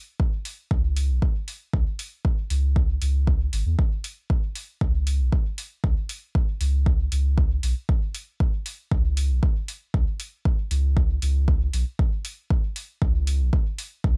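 A layered electronic kick drum opens this dub techno excerpt at 0.2 s, sitting up front with a deep, tape-tinged body and the character of a small room. An analog-sounding electronic hi-hat joins at 0.5 s, sitting much quieter in the mix and carrying the same small-room colour. At 0.7 s a soft dub sub bass arrives, round and sustained with a fast attack, blending triangle and square wave tones between G#1 and E2. Tube saturation thickens the bass, and sidechain pumping gives it a breathing pulse beneath the kick. The groove moves at 117 BPM in a straight 4/4, tuned to A4 = 436 Hz. The mood is cavernous and meditative, though the sound stays dry, with little reverb.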